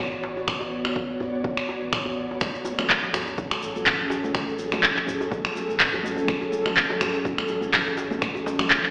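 Afro house at 124 BPM in F# minor, driving and earthy, built on an overdriven, up-front afro-pop kit of finger snaps, handclaps and toms over a punchy layered electronic kick, with a tight, cracking djembe rattling from the start, soft-handed vintage congas and a grainy egg shaker joining at 2.4 seconds, a deep, round analog bass pumping beneath an ethereal, detuned chorused pad that sustains Bm7 then F#m7, all set in a roomy reverb with a lo-fi AM-radio cast in this short excerpt.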